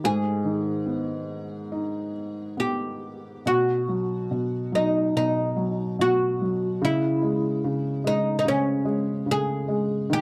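The rhythm flows freely in a rubato 4/4, giving this short lullaby, cut from a longer piece, a gentle and wistful sway suited to children's music. An oud carries the melody throughout, ranging from C#4 to G#4, its plectrum-plucked double strings sounding woody and fretless up front. Beneath it, a felt-muted upright piano supplies soft, mellow accompaniment from G#2 to D#4, intimate and natural in tone. The harmony rests on G#m, moves to B as a second section begins at 3.4 seconds, and reaches C#m at 6.8 seconds. Light reverb touches a dry, close recording with a 1970s studio character.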